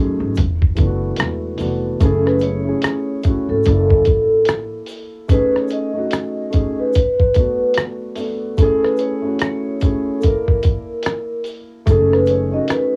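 Reflective and melancholic, this lo-fi hip hop excerpt moves at an unhurried pace with a gentle swing. A felt-muted upright piano carries the harmony from the start, its soft, mellow, intimate tone dulled by thick felt, cassette tape and a low-pass filter. A sampler-style drum kit sits up front with a thumpy kick, hi-hat and rim click, compressed, pitched down and muffled in tape-warm color, while a very quiet egg shaker adds faint texture. A woody, dark upright bass is played pizzicato, appearing early and returning briefly at 11.9 seconds. From 2.0 seconds a vibraphone with soft mallets takes the melody, its metallic, ringing tone shaped by a slow motor vibrato, analog delay and a boxy small-room character. Light reverb and the warmth of a home cassette recording wrap the music in a hazy intimacy as the chords drift through lush ninths and altered colors.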